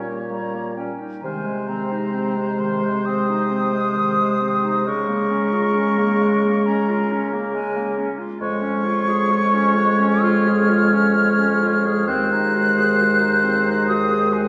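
A slow, tender romantic movement for wind quintet opens with all five players together, the silver concert flute carrying the melody high above in a pure, hollow, mellow tone with vibrato and tongued notes. Around it, the oboe sings a soft-attacked second line with light vibrato, sounding distant and roomy, while the clarinet adds accompaniment from a similar distance. The French horn sits up front and close, its dark, vibrato-tinged voice holding the accompaniment in the middle of the texture, and the bassoon anchors the bass with a gentle, light vibrato. At 66 BPM in 4/4 with a flexible rubato feel, the harmony moves through colorful chords, several of them sevenths, with Db major established from 8.4 seconds. A long, wet church reverb gives the ensemble a spacious, glowing hall sound, and the passage is cut from a longer piece, ending at 14.5 seconds.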